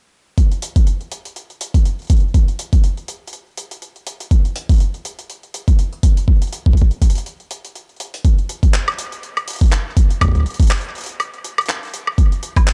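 A swung 4/4 groove at 122 BPM, with a 56% swing on the sixteenths, drives this playful, intricate IDM excerpt cut from a longer piece. An up-front, thumpy electronic kick, pitched up, compressed and overdriven, plays throughout from 0.4 to 12.7 seconds. Beneath it sits a jungle-style sampled kit of handclaps, hi-hat and woodblock, gritty and overdriven and heard as if re-recorded in a large room, all within a dark production with little reverb.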